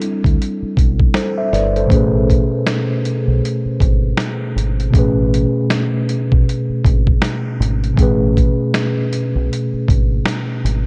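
A mellow tine electric piano and a dusty, sampler-style drum kit open this cosy, nostalgic lo-fi hip hop fragment together, with the piano sitting up front through its built-in speakers and carrying a cassette-tape character. The drums bring finger snaps, hi-hat, a thumpy kick and a medium-tuned snare, their sound compressed, gritty and up front, all set to a relaxed swing on the sixteenths. A deep, round fingered electric bass joins at 0.2 seconds, dark and punchy in its low register. The harmony moves from Cmaj9 to Amaj9 at 1.9 seconds, giving the short passage a soft, wistful colour. A moderate plate reverb soaks the dreamy mix, and a cassette-tape haze over the whole recording adds to its worn, homely feel as it plays through a single section of a longer piece.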